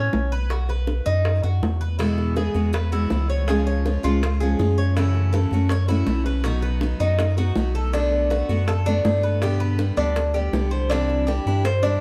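This sunny, danceable excerpt of Cuban son and guajira puts the up-front Cuban tres at its heart, its metallic double strings, some doubled at the octave, spinning picked arpeggios across the full 12 seconds. Beneath it, a round analog bass sits deep and close, its nasal, wave-folded tone combining a fast attack with sustained notes that anchor the groove. High-tuned bongos join at 0.1 seconds with tight, compressed, saturated hits played with hard hands. At 2.0 seconds a bright picked steel-string acoustic guitar enters as accompaniment, filling out the middle register. The harmony wanders colorfully from Aadd9 through Eadd9, F#m7 and Bm7 to a closing Cadd9, all set in a moderate large-studio reverb with a dark, warm production.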